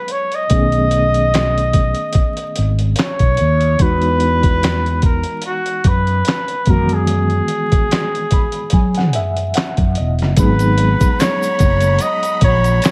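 A vinyl-crackled small-room ambience frames this introspective, late-night neo-soul excerpt in G# minor at 73 BPM, where a clear, softly attacked flugelhorn with vibrato and slapback echo carries the melody over a reedy, slightly out-of-tune electric piano with fast tremolo that plays a fill from 7.9 to 10.4 seconds, a gritty sampler-style kit with thumpy kick, fat snare, hi-hat and handclaps, and a growly fretless bass with subtle chorus, before dark, lush bowed strings and a background tube shaker with finger snaps arrive at 10.4 seconds on a G#m9 chord.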